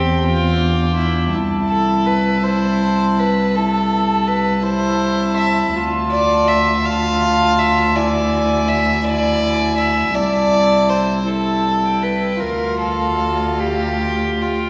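A dark, intimate cello sits close and up front, its bowed bass line carrying vibrato and an airy bow sound as it anchors this slow, romantic string quartet movement in a tender, lyrical mood. Just as prominent, the second violin adds a rich, floating inner line, while the first violin's pure, smooth melody rides high above it, and the viola fills in warm accompaniment in the middle of the texture. All four players bow sul tasto with soft attacks, and the rubato feel in a lilting 12/8 lets the phrases breathe. The harmony drifts through minor-key shades, moving from Dm to E7/D and closing on an unresolved Dmadd11. A lush concert hall reverb surrounds the ensemble for the full 14.7 seconds of this passage, which is cut from a longer piece.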